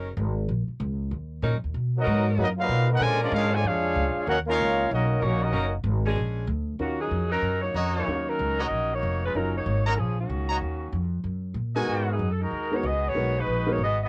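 A fast swinging 4/4 drives this brassy, sultry jazz excerpt in a minor key, with a woody, growly pizzicato upright bass up front throughout while a tight, soft-edged saxophone section holds sustained chords over the opening 6.5 seconds. A vibrato-laced trumpet section carries the first melody alongside a veiled, cup-muted trombone line, before a dark, vintage-toned saxophone section takes over the tune at 6.8 seconds. There it is joined by short-sustain grand piano accompaniment and clear trumpet stabs, all in a lightly reverberant home cassette recording.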